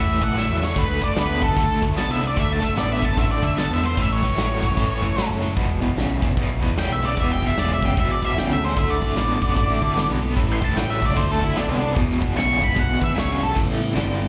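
Heard through a club PA with a dry, live-gig feel, this raunchy, gritty swung blues rock and southern rock cut opens with an octave-fuzz lead guitar carrying the melody over a double-tracked, crunchy guitar riff with tremolo and slapback echo, a growling overdriven picked bass, and a big acoustic drum kit with punchy kick and bright cymbals that kicks off with a quick fill at 0.4 s, before a very quiet, piping tonewheel organ with slow rotary vibrato slips in with sustained chords at 7.2 s.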